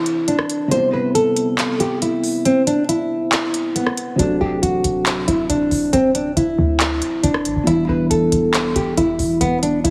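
Melancholic and eerie, this half-time trap cut from a longer hip hop piece puts a thumb-plucked nylon-string guitar up front on the melody, over a soft, felt-muted upright piano whose dark, intimate tone carries audible action noise, while crisp electronic hats, handclaps and rim clicks with a tape-warm edge fill out the trap kit. After an opening break, a short, punchy 808-style bass with a sine body and noise layer enters at 4.2 seconds as the chords move from Am and Cmaj7 to D7 and Em7. Light studio reverb and heavy compression give the mix a radio-like sound.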